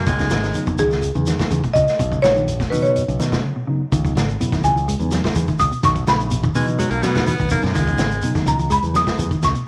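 A buzzing marimba struck with medium hard mallets carries the melody up front, its woody, dry and airy tone ringing over a hypnotic, funky afrobeat groove in C# dorian at 125 BPM in straight 4/4. Beneath it, a bright, direct fingered electric bass anchors the low end, while a vintage acoustic drum kit with a punchy kick and medium-tuned snare sounds saturated and gritty, its top rolled off. A dark, clean electric guitar plays arpeggios and a mellow tine electric piano adds warm accompaniment, both sitting in the background, alongside quiet, close congas with a thin, low-tuned skin and a grainy shekere in a small room. A raspy, forceful baritone saxophone with vibrato appears briefly at the start and returns at 6.6 s as a second line. The harmony moves between C#m9 and Bmaj9 across two matching passages, with a short break at 3.4 s, all set in light reverb and studio ambience, with some lossy compression artefacts in this brief cut from a longer piece.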